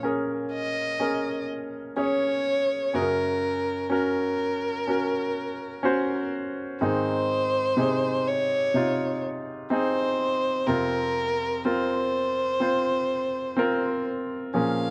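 The recording is dry and open-air, with little reverb and a close, direct sound. This slow, melancholic pop piece moves at 62 BPM in 4/4 with a straight feel, and carries a heartbroken mood throughout. A concert grand piano opens at 0.0 seconds as accompaniment, its tone clear and polished with a deep bass and short sustain, set up front and touched by a slapback echo. At 0.5 seconds a single bowed violin takes the melody in a high register, smooth and even, with vibrato and a silky top, sitting just as far forward as the piano. The harmony moves from Bbm7 to Gb, then Ab, and settles on Fsus4 at 10.7 seconds, as the excerpt is cut from a longer piece.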